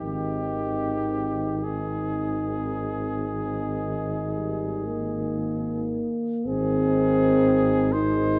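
In a rubato 12/8, this serene, lyrical hymn-like passage for brass band, cut from a longer classical piece, sets a mellow cornet melody with light vibrato over a French horn section's second line, a dark euphonium and a distant, roomy trombone in the background as accompaniment, and a tuba bass with soft attack and vibrato, all heard through a moderate concert hall reverb and the warbly pitch drift of worn cassette tape.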